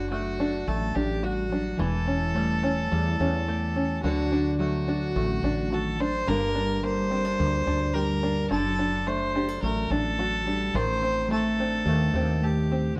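Reflective and intimate, this 13-second cut from a longer acoustic folk piece moves at 107 BPM in a straight 4/4, with a nasal, reedy bowed fiddle carrying an up-front second line over fingerpicked classical nylon-string guitar, twangy, plunky banjo arpeggios and a growly, round fretless electric bass sitting forward in the mix, the group heard playing live together in one room with moderate studio reverb as the chords pass from D/F# through Gm to a closing Adim.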